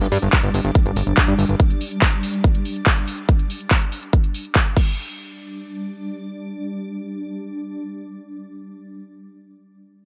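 Psychedelic trance at 142 BPM in a straight 4/4, psychedelic and driving, cut from a longer piece and built on a G5 chord. A swarming, warbling drone holds tense, evolving sustained chords with a slow attack, built-in reverb and sidechain pumping, while a fat, detuned analog bass with ring modulation and a filter sweep plays only until 1.6 s. A big-room dance kit of crash, handclaps and metallic hi-hats and a punchy electronic kick, entering at 0.3 s, both drop out at 4.9 s, leaving the drone alone under light reverb.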